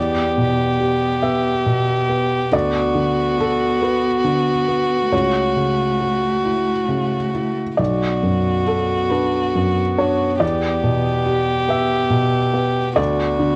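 A slow, rubato 6/8 at 46 BPM in dotted quarters gives this melancholic, longing neoclassical piece in B minor its unhurried, yearning sway, with the harmony moving from Em7 through Bm/D and F#m7/C# to Bm. A felt-muted upright piano sits up front with a mellow, short-sustained accompaniment and audible action noise, while a single violin carries the melody with an airy sul tasto bow and light vibrato, and a dark, smooth-topped cello holds a second line in the background. Light reverb and the worn, warbling pitch drift of old cassette tape give this excerpt from a longer work an intimate, faded quality across its 13.6 seconds.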